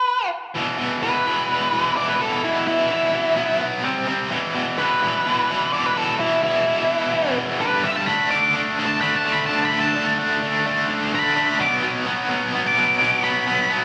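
An octave-fuzz lead guitar, dark and distorted with slapback echo and analog delay, takes a cathartic solo from 0.6 seconds over a bright, double-tracked overdriven guitar riff treated with tremolo, in a brooding E minor rock excerpt at 128 BPM that sounds like a live gig heard through the venue's PA with club reverb, its power chords moving from E5 through B5, C5, G5 and D5 before landing on Bm.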